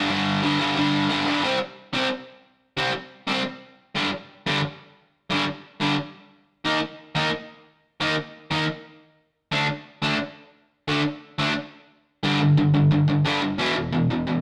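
Punk guitar playing alone, energetic and rowdy, in a short cut from a longer piece. A single distorted electric guitar carries the whole recording, bright and picked, double-tracked and placed up front, moving through power chords on G, C, E-flat, D and E. After an opening burst, the feel drops into half time from 1.4 to 12.2 seconds, giving the middle stretch a heavier, lurching weight before the last section returns to G at 12.2 seconds. The sound is a rough rehearsal-room take with tube saturation and a moderate stone-room reverb, lending the chords a raw edge.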